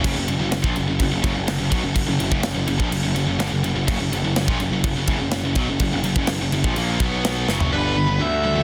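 A straight 4/4 pulse from a tight, up-front acoustic kit with bright cymbals, crash, kick, snare and toms drives this heavy, aggressive heavy metal cut, where two high-gain distorted guitars (one sitting in the background) pick a low riff over a growly, fuzz-overdriven picked electric bass, until a drum fill at 7.5 seconds gives way at 7.7 seconds to a brief, bright high-gain lead guitar melody set up front in a dense, heavily limited modern master with light reverb.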